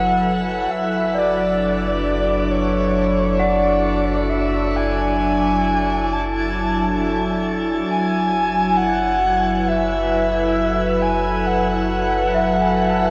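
A breathy, flute-like synth lead with vibrato and lush chorus carries the melody up front through a diffuse delay in this reflective, spacious ambient fragment at 67 BPM, over a warbly, nostalgic tape-like pad of detuned sustained chords moving between F#m11 and Dsus2/F#, a delicate, slightly out-of-tune celesta tracing bell-like arpeggios in the background, and a deep, round sine sub bass that fades out, the whole bathed in a shimmering 7.8-second reverb and worn cassette pitch drift.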